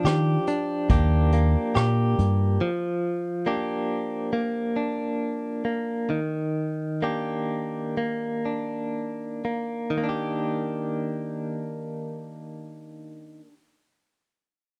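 Hopeful and tender, this acoustic folk-pop ballad excerpt opens with the clean, direct-recorded electric guitar's arpeggios alongside a round, dark fingered electric bass and a vintage brush kit of hi-hat, punchy kick and rim click carrying a gritty 12-bit sampler tint. Bass and drums both drop out by 2.6 seconds, so the guitar carries on alone with arpeggios bathed in tremolo and plate reverb, easing into a slower pace over lush seventh and ninth chords until it stops at 13.6 seconds.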